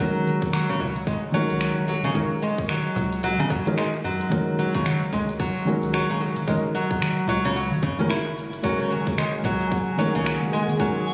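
A dark, fingerpicked nylon-string guitar with audible finger squeak sits up front, playing echoing arpeggios beside a felt-muted upright piano whose soft, intimate chords carry action noise, tape echo and sidechain pumping, over a deep, round analog bass, crisp hi-hat, finger snaps and shaker from an overdriven organic electronic kit, close acoustic congas and bongos, and a tight, overdriven electronic kick, in this peaceful, swung organic downtempo excerpt resting on a single chord, where a sparkling granular texture with octave-up shimmer glimmers in from 8.8 seconds and an ethereal, airy pad with ensemble chorus enters at 9.4 seconds.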